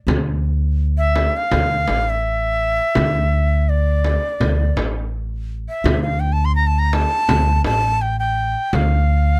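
Turkish makam ensemble music in D makam nihavent, soulful and longing, moving at a straight 83 BPM in 4/4 and cut from a longer piece. A woody, growly pizzicato upright bass and a small frame drum, its hard hands sounding distant as if in a large room, open the passage before a breathy, reedy ney enters at 1.0 s, its crisp attack and vibrato carrying the melody up front. The close, detailed recording carries little reverb, keeping the bass's steel strings and the cane's airy tone present and intimate.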